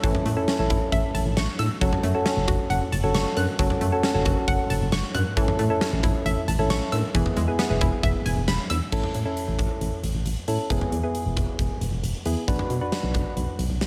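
Synth-pop in A major at 135 BPM, this upbeat, bright excerpt from a longer piece moves from A through F#m and E before turning to Bm near the end. A huge arena drum kit sits up front with a punchy kick, medium-tuned snare, bright cymbals, toms and cowbell, while a dark, round FM bass anchors the low end and soft, mellow electric-piano-like synth keys with chorus carry the accompaniment. A detuned sawtooth pluck with tape echo, a noise layer and a filter sweep spins arpeggios until 8.8 seconds, all within light reverb and small room ambience.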